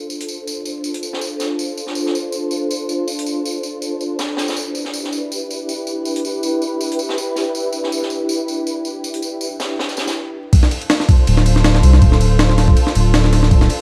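A gritty, pitched-up jungle sampler kit bursts in at 10.5 seconds for the drop, its thumpy kick, medium-tuned snare and ride cymbal compressed, tape-toned and set in studio reverb, giving this frenetic, raw drum and bass cut from a longer piece its punch at 161 BPM with a light swing on the sixteenths. From the very start and on through the drop, a silky, vintage string machine holds soft, dark sustained chords in D dorian, moving from Dm7 to Em7 and back, with slow attacks, long releases and an ensemble chorus. Beneath those pads, an acoustic jazz kit with a high-tuned snare, hi-hat and tambourine plays quietly in a natural studio room, its hats, snare, percussion and room all high-pass filtered, before it stops at 10.2 seconds for a brief break. A deep, thick sine sub bass arrives at 11.3 seconds, its tube saturation and fast attack making it the loudest part. The production is dusky and mellow, with vinyl crackle and a small-room reverb.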